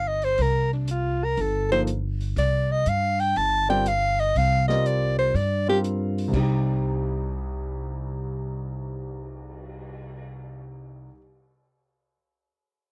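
Dry, close 1970s-style studio sound frames this intense, spiritual modal jazz excerpt in C dorian at 121 BPM with a swung 4/4 feel, where a breathy, mellow soprano saxophone solos with vibrato over a woody pizzicato upright bass and an open drum kit with dark cymbals, a high-tuned snare and a boomy kick, while a natural-toned grand piano enters at 1.7 seconds and the saxophone falls silent at 5.8 seconds, shortly before the harmony moves from C9sus4 to Cm at 6.3 seconds.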